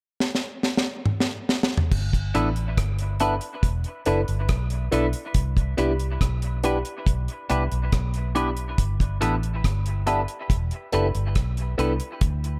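A drum fill opens this excerpt of smooth, sweet lovers rock reggae, played on a deep acoustic kit with a high-tuned snare, tight kick, rim clicks, toms, hi-hat and crash, sitting up front in a dry sound touched by gated reverb. At 1.9 seconds a vintage muted fingered electric bass arrives, dark, round and punchy, its foam-muted, amped tone placed close alongside the drums. From 2.3 seconds a bright, barky tine electric piano carries the accompaniment through a combo amp with a phaser, while a clean, picked electric guitar adds compressed stabs colored by subtle chorus and dub echo. The harmony moves from G6 to Cmaj9 and back to G6 over a straight 4/4 groove. Light reverb and studio ambience surround the piece.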